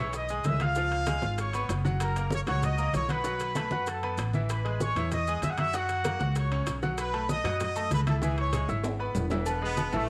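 Sunny, danceable salsa in which a punchy trumpet section with light vibrato carries the melody up front, over a bright, polished grand piano with short sustain and a woody, dark pizzicato upright bass. Underneath sit low-tuned, damped congas, tight high-tuned bongos and cowbell, ringing metal-shell timbales and agogo bells, and grainy maracas, all kept in the background. A drum fill runs from 8.2 to 9.5 seconds before the chords land back on the home chord, and light reverb frames this excerpt cut from a longer piece.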